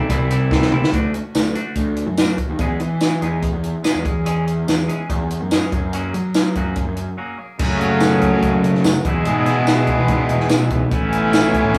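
Two picked guitars open this upbeat, jangly indie rock excerpt at 144 BPM: a cranked, overdriven stack guitar sits up front beside a bright, clean, compressed twangy electric. A fuzzy, overdriven picked bass drives underneath, and a compact acoustic cocktail kit (punchy kick, high-tuned snare, hi-hat, toms, crash and tambourine) comes in at 0.1 seconds and plays a fill at 0.5 seconds. The band sounds as if playing live in a small, wet room, and a break at 7.2 seconds leads into a new passage at 7.6 seconds.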